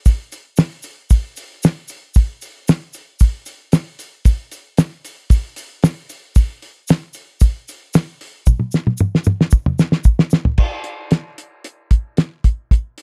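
A cloth-damped drum kit sits up front with a thuddy, fat snare, tight kick, dark cymbals and a rolled-off top in this straight 4/4 rock excerpt at 114 BPM with a trippy, kaleidoscopic mood. A grainy, bright tube shaker plays close alongside until 10.4 seconds, while the kit moves through crash, hi-hat and toms and plays a fill from 8.5 to 10.6 seconds into a new section that carries on to 13.0 seconds. The sound is a dry, close 1970s-style studio recording with little reverb.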